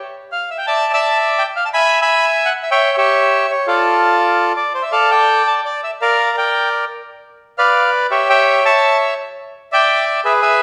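A solo bandoneon carries this brief tango excerpt, its reedy, bright tone sitting mid-forward and up front as it plays from 0.3 to 10.6 seconds in a range from F4 to B5. The mood is elegant and playful, set in D minor with a rubato feel over a 3/4 metre at 169 BPM, and tuned slightly above standard pitch at A4 = 441 Hz. The harmony moves through a minor-key progression that leans on dominant A7 chords and diminished colours before settling toward a suspended D chord near the close. The passage falls into two statements of the same section, the second beginning at 4.9 seconds. A lush recital hall reverb surrounds the instrument, lending the sound the resonant bloom of a church or concert hall, and the clip is cut from a longer piece.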